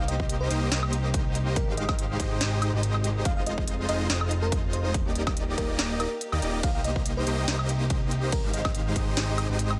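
This lush, bittersweet future bass cut in C minor opens at 0.0 s with huge, detuned supersaw chords, a fat sawtooth bass and a bell-like FM electric piano melody, each pumping to the sidechain, while a very quiet chamber string section floats sul tasto underneath through Cm7, Abmaj7, Fm7 and Ebmaj7. At 142 BPM in a half-time feel with a light 16th-note swing, a trap kit with a sharp snare, crisp hats, ride and woodblock arrives at 0.1 s, followed by a punchy, overdriven electronic kick at 0.2 s. The sparkling piano, set back with chorus and delay, and the kick both drop out at 9.0 s, while the bright supersaws, the up-front bass, the strings and the trap kit carry on in a digital ambience.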